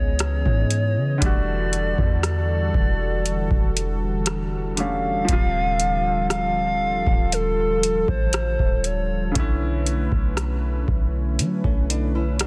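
A hollow, woody clarinet-like synth lead with chorus and delay carries the melody over a bright baby grand piano, a smooth detuned analog pad and a deep, boomy 808-style bass in this sensual, late-night contemporary R&B excerpt at 59 BPM, with a tape-warm analog drum machine of deep kick, metallic hi-hat and rim click entering at 0.2 seconds and a thumb-plucked flamenco guitar adding delayed arpeggios at 11.6 seconds, set in digital ambience and a dense, heavily limited modern master.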